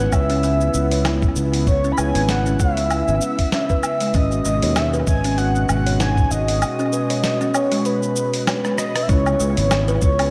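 Organic downtempo with a mystical, warm mood and a gentle swing, moving from C#m7 to G#m7 in this cut from a longer piece. A breathy, flute-like synth lead with vibrato carries the melody over a smooth, warbling analog pad, woody kalimba arpeggios with 12-bit grit and tape echo, a growly, up-front fretless electric bass, and a very quiet bronze singing bowl that rings until 9.1 s. A gritty, dusty sampler-style kit with a thumpy electronic kick plays a fill ending at 9.1 s, where a dark, very quiet chord stab enters, all set in an echo-heavy chamber reverb.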